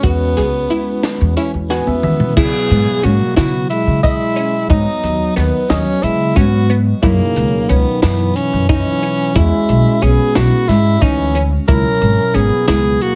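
Set in a straight 7/8, this bright, intricate slice of progressive instrumental band music moves with an uneven pulse, and its heavily compressed, radio-like sound sits in a moderate small room. Up front, a clear, close-miked tenor saxophone carries the jazz-style melody with vibrato and plate reverb, while a woody pizzicato upright bass on steel strings anchors the low end. A compact cocktail drum kit sounds dry, dark and smooth, with a high-tuned snare, punchy kick, dark cymbals and a rolled-off top. Behind them, a barky, overdriven tine electric piano played through a combo amp adds phased accompaniment, and a crystalline, detuned wavetable pluck spins glassy arpeggios with a noise layer and chorus. A raspy, growling trombone with a pop-style vibrato joins as a second line at 1.4 s, just as the electric piano and then the drums play fills leading to the change at 2.4 s, where a grainy tube shaker enters in the background. 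The harmony then moves through C#m7, G#m7, F#7sus4 and E6 before returning to C#m7.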